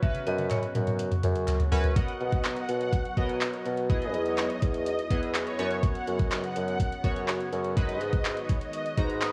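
A smooth, electronic R&B drum kit sits up front in this upbeat, carefree dance-pop clip in B major at 124 BPM, opening with a drum fill over the first 2.0 seconds, its knocking kick, woody snare and metallic hats sounding re-recorded in a small room. A mellow, punchy bassoon carries the bass line from 0.3 seconds in a classical style, pumping against the kick alongside glossy, chorused retro synth keys and an evolving, resonant sawtooth pad that drifts in the background with phaser. A hard-mallet marimba with digital delay and a distant, crisp group handclap add faint color, while the dry mix has a worn, warbling cassette-tape character as the chords move from F#sus4 through Bmaj7 and Emaj7, back to F#sus4 and on to G#m7.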